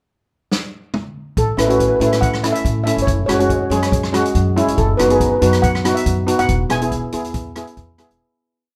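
A shimmering steel pan on double seconds, played with soft rubber sticks, carries the tune of this short, festive calypso, spinning song-like motifs between A4 and G#5 in a mellow, boxy small-room tone. A second steel pan on cello pans, struck with medium rubber sticks, sits up front with metallic rhythmic triad chords. A dark, woody upright bass with steel strings plays a syncopated pizzicato figure, while a vintage drum kit with a punchy kick, medium-tuned snare, rim click, hi-hat and toms drives a calypso groove at 141 BPM in 4/4, its top end rolled off. The drums open alone with a fill in the pickup bar at 0.5 seconds. The melody pan and bass enter at 1.4 seconds for a sunny verse in A major moving through A, F#sus2, B/F# and E, and the chordal pan joins at 1.6 seconds. The kit sounds natural in its studio room, light reverb adds space, and the piece fades out from 6.5 seconds to the end.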